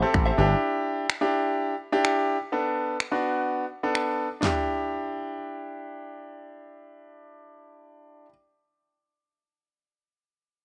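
Dance-pop with a driving, confident feel, built on a bright, brilliant concert grand piano whose pumping chords carry through the whole 8.3 seconds over a light reverb and a rough home-demo mix. The opening half-second packs in a punchy, envelope-filtered slap bass, a clean, picked electric guitar riff with ensemble chorus, and a barely audible downlifter, while an electronic pop kit of snaps, toms, fat snare and punchy kick runs until 4.5 s, its kick dropping out from 3.5 s. The harmony moves from Em7/G to Bm7 before settling on Em7 as a new section opens at 4.4 s, and the piano carries on alone in this brief cut from a longer piece.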